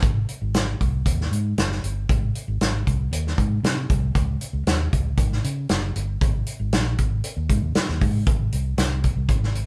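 A straight 4/4 groove at 116 BPM in Ab major drives this brief, danceable cut of uptempo 1960s-style soul, where an up-front acoustic drum kit with a punchy kick, medium-tuned snare and hi-hat plays alongside a dark, round, amped fingered electric bass ranging from Gb1 to Db3, both heard together from the start in a warm live-room sound with light reverb as the music moves into a new section at 8.3 seconds.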